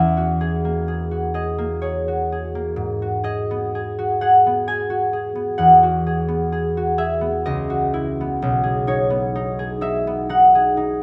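Bathed in a moderate concert-hall reverb, this gentle, mysterious classical excerpt for solo concert harp unfolds at a rubato 64 BPM in 3/4, its mellow, ringing, fingerpicked tone sitting up front as it drifts from F#13/E through G#m7, Eadd9 and C#m11 to B69 across a range from B1 to G#5.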